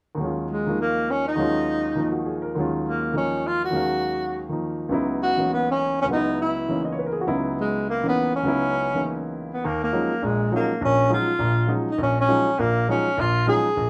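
A breathy tenor saxophone carries the melody from 0.5 seconds, its mellow, whispered subtone marked by soft attacks, scooped notes and vibrato that make the solo feel intimate and roomy. Beneath it, a clear grand piano provides accompaniment from the very start, sitting up front with a crisp, short sustain. The jazz groove swings briskly in four, and its mood is both hypnotic and intense. The harmony dwells on an Ebm11 chord, moves to Dbm11 at 4.9 seconds, and returns to Ebm11 as a new section begins at 9.6 seconds. Moderate studio reverb surrounds the pair, and the passage is cut from a longer piece, ending mid-flow.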